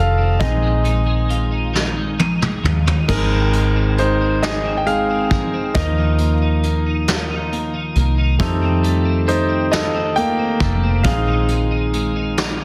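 A heartfelt, tender six-eight pop ballad opens with a clear, intimate concert grand piano carrying a solo line, its action noise audible and its deep bass ringing with long sustain, while a bright, twangy twelve-string electric guitar spins clean picked arpeggios through ensemble chorus and tape echo. A vintage muted electric bass, round and foam-muted, sits up front beneath them from the first moment. At 0.4 seconds a vintage brush drum kit joins, its dark cymbals and rolled-off top giving it a warm, up-front character, and a drum fill from 1.7 seconds leads into the next section at 3.1 seconds, where the piano continues its solo. The tight kick carries a touch of soft clipping, and the harmony moves through Bb7sus4, Ab, Ebsus2 and F7. Light reverb and small room ambience surround a dense, heavily limited modern master in this excerpt from a longer piece.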